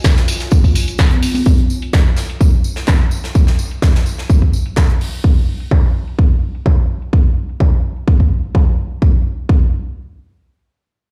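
Piano house with a bittersweet, soulful mood, cut from a longer piece and set in a steady, straight 4/4 groove. A punchy, layered electronic kick sits up front and carries on until 9.6 seconds. Beneath it, a produced house kit adds hi-hat and a punchy snare through low-pass filtering, while an airy, polished metal kit with a medium-tuned snare and tambourine comes through high-pass filters until 5.1 seconds. Bright, saturated tambourine and soft-handed congas open the piece along with a mellow, nostalgic pad, lo-fi and detuned with chorus, phaser and sidechain pumping, that hovers in the background over a Db chord and drops out at 1.5 seconds. A filter sweep runs across the drums for most of the passage, and the whole thing sounds as if it is played on a big sound system in a bare stone room.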